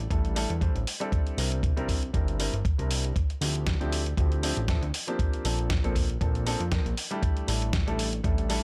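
A gritty, thumpy electronic kick drum sits up front in this cosmic, sensual nu-disco excerpt at 118 BPM in D minor with lightly swung sixteenths, alongside a fat, detuned sawtooth analog bass with a fast attack, a dusty soul sampler-style kit of hi-hat and medium-tuned snare that sounds tape-warm and re-recorded in a large room, and a present baby grand piano carrying sidechain pumping and slapback echo over chords moving from A7sus4 through C9, Dm11 and Bbmaj9, inside a digital ambience.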